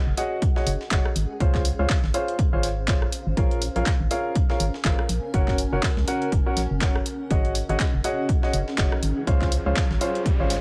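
A blurred, cloudy granular pad in the background opens this energetic, bittersweet piano house excerpt at 122 BPM with a swung sixteenth feel, joined almost at once by a hollow, dark, organ-like FM bass, an up-front, woody upright piano riff with low-pass filtering and dub echo, a punchy, tape-warm analog drum machine of handclaps, hi-hat and rim click, a gritty, pitched-up sampler-style breakbeat kit of hi-hat and snare sitting far back, and an analog electronic kick at the front, with the pad, bass, piano and breakbeat hats pumping to the sidechain over Ab7sus4, Dbmaj7, Bbm7 and Gb chords until an electronic riser enters in the background at 8.2 seconds.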